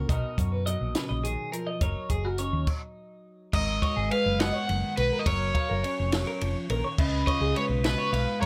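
A round, punchy hollow-body short-scale fingered bass sits up front in this playful, wistful math rock and midwest emo excerpt in 6/8, joined by a dark clean electric guitar with analog chorus, a bright, twangy twelve-string electric guitar playing arpeggios through a phaser, and a dry compact cocktail drum kit with a high-tuned snare and tight kick, before the band halts for a stop at 2.7 s and a crunchy overdriven guitar enters up front at 3.6 s with a spring-reverbed melody, all in a light room reverb.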